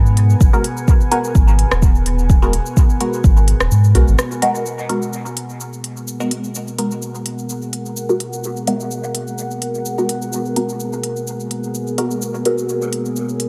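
Hazy and meditative, this dub techno piece in G# minor at 127 BPM with a light swing opens with a round sine sub bass, nasal, detuned sawtooth chord stabs soaked in phaser, cassette tape color and dub echo that take on a filter sweep from 4.7 s, a moody, warbling vintage pad holding a G#m9 chord and pumping with the sidechain, and a glassy harmonics texture drifting in the background. An up-front, deep electronic kick drives it from 0.4 s, alongside smooth hi-hat, cabasa and rim click from a deep house kit in small room ambience, and a brief, very quiet lo-fi synth keys riff appears at 1.1 s.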